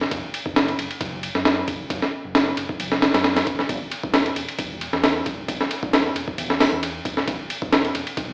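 This gritty, raw breakbeat excerpt rides a lightly swung sixteenth-note groove, with a sampler-style drum kit of hi-hat, kick, ride cymbal and snare running from 0.0 to 8.3 seconds. The drums sit up front, compressed and gritty, pairing a thumpy kick with a high-tuned snare inside a small room ambience. Underneath, a fingered electric bass holds the low end from E1 to F#2, its dark, amped, round tone mixed well beneath the kit. The whole recording carries a wet studio ambience and sounds as if played on a big sound system in a bare room, with stone room reverb, vinyl crackle and an AM radio sound. Cut from a longer piece, it stays within a single section for its full length.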